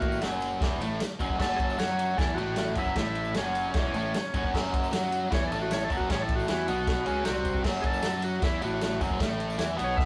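Garage rock at 154 BPM, raw and swaggering, cut from a longer piece, where a buzzy transistor combo organ with light vibrato takes a solo over a biting, bright, double-tracked overdriven guitar riff, a dark, round fuzz bass, an up-front vintage drum kit with punchy kick and rolled-off top, and a very quiet jingly tambourine, all in a rough rehearsal-room sound with light reverb and saturation.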